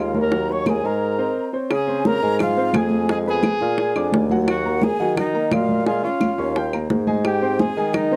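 A dry, close studio sound in a 1970s vein frames this sophisticated, fiery stretch of Afro-Cuban jazz. A dark, breathy trumpet carries the melody with vibrato and scooped notes, a metallic jazz flute traces a second line above it, and a clear upright piano with long sustain supplies the chords from Ebm7 through Dbmaj7 and Bb7 to Abmaj7, while a smooth-topped bassoon holds the bass in a classical style. Round, low-tuned bongos and thick-skinned, high-tuned congas drive the percussion from 0.1 seconds, woody claves join at 0.7 seconds, and a short break falls between 1.0 and 1.7 seconds.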